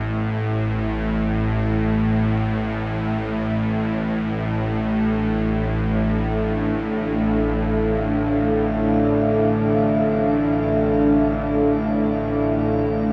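From the first moment, a tense, string-like bowed drone sits up front in the low register, its detuned sawtooth edge ringing with vibrato. Above it, a deep, moody pad holds sustained chords softened by chorus and a shimmering haze, and both parts are wrapped in a huge, dark reverb to give this brief, ominous dark ambient fragment its weight.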